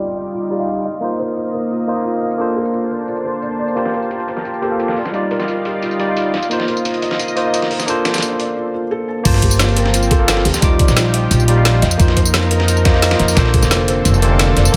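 Straight 4/4 drums at 175 BPM drive this lush, rolling liquid drum and bass passage, where a barky, lightly driven tine electric piano with sampler grit and tape echo sits up front over a thick, detuned sawtooth unison pad and a dark, felt-muted upright piano playing arpeggios in the background, while an overdriven drum and bass kit with a woody snare enters at 0.3 seconds under a filter sweep, a gritty, compressed soul sampler-style kit joins at 3.8 seconds, and after a short break a thumpy pizzicato upright bass and a knocking electronic kick arrive together for the drop at 9.3 seconds.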